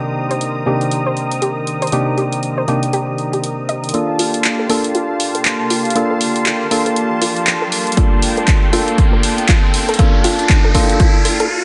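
Warm, late-night deep house cut from a longer piece, where a smooth detuned analog pad, a hollow percussive organ stab up front, a silky string machine and a soft, warbling round pluck all pump against the sidechain over an overdriven drum machine of handclaps, hi-hat and rim click, before filter sweeps on the stab and arpeggios begin a build-up at 3.9 s, an electronic riser joins at 5.6 s and a punchy, up-front kick drum lands at 8.0 s.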